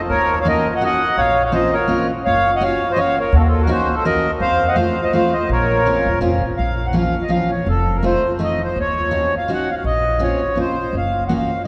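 Musette waltz, whirling and nostalgic, where a reedy, slowly beating accordion carries the melody up front over a full-bodied picked steel-string acoustic guitar entering at 0.5 seconds and a woody pizzicato upright bass, all bathed in the long, wet reverb of a church or concert hall in this short cut from a longer piece.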